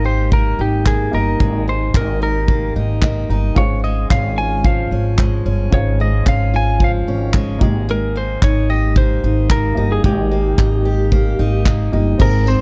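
A dark, dry production frames this heartfelt, sunny acoustic pop excerpt at 111 BPM, where a twangy, compressed lap steel slide carries the melody over picked steel-string acoustic guitar with finger squeak, a slightly detuned upright piano in the background that adds a fill at 2.8 seconds, a woody pizzicato upright bass up front, and a tight country drum kit with handclaps, tambourine and crash entering at 0.3 seconds, moving between Eb and Db.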